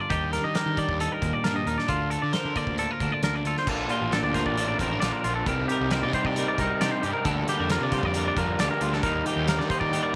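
Math rock with a midwest emo tint, this short excerpt moves at 134 BPM in a straight 4/4, its mood wistful and restless over major-seventh and minor-seventh chords such as Ebmaj7, Bbmaj7 and Cm7. A bright, clean twelve-string electric guitar carries the accompaniment from the start, while a twangy, compressed electric guitar sits up front playing arpeggios in a higher register. Underneath, a picked electric bass with fuzz and overdrive holds the low end, and a loose indie drum kit of kick, snare, hi-hat and crash adds a punchy kick, dark cymbals and a pumping room sound with a rolled-off top. At 3.7 seconds a raw, lo-fi, double-tracked garage guitar enters with an overdriven riff, thickening the texture as the harmony shifts. Light reverb and small room ambience give the whole mix an intimate, live-in-the-room feel.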